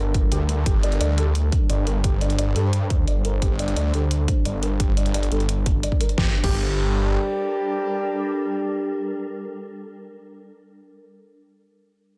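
Dark technical drum and bass at 174 BPM in G minor, this mechanical, dark fragment pairs a punchy electronic kick with a dubstep kit of deep snare, hi-hat and crash, both re-recorded in a large room, beneath an up-front snarling saw bass that growls with distortion and sidechain pumping, while a swarming, granular drone holds sustained chords opening on Gmadd9, a soft felt-muted upright piano plays filtered, tape-echoed arpeggios under a filter sweep in the background, and a tight, mellow brass section enters with stabs at 1.2 s and carries on to 9.7 s after the drums stop at 6.5 s, in a lightly reverberant, dense and heavily limited mix.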